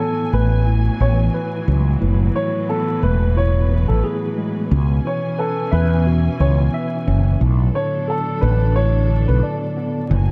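Vinyl crackle and small-room ambience frame this dark, gritty hip hop excerpt with a swung feel, where a woody, boxy upright piano with slapback echo carries the melody until 9.4 seconds over a clean tine electric piano tinted by cassette tape, lush bowed strings holding sustained chords, and a round, up-front fretless bass that enters at 0.3 seconds, moving through F#m11, C#m7 and Bm7.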